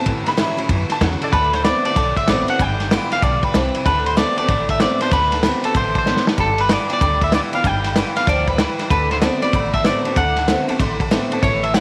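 A slightly broken-up lead electric guitar carries the melody up front from 1.3 seconds, dressed in spring reverb and tape echo, over a rollicking, upbeat rockabilly groove in D mixolydian at 190 BPM with a swung 4/4 feel and dominant-seventh chords on A7, D7 and G7. A short solo from a jangly, detuned honky-tonk upright piano opens the cut, while a twangy, lo-fi electric guitar riff with its own spring reverb and a full-bodied dreadnought acoustic guitar sit in the background. Woody pizzicato upright bass on gut strings and a muffled vintage drum kit with dark cymbals and a tight kick anchor the small-room sound, the drums adding a fill at 6.1 seconds.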